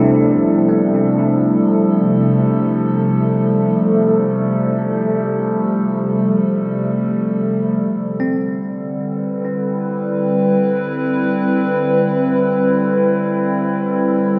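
Soaked in a lush hall reverb, this dreamy, weightless ambient fragment centers on an up-front, warbling tape-like pad with chorus and phaser holding nostalgic sustained chords, while a bell-like, clean tine electric piano plays arpeggios in the background through subtle chorus and analog delay, and a very quiet, evolving analog drone sits beneath until 7.9 s as the harmony moves from Fadd9/C to Cmaj9 at 7.8 s.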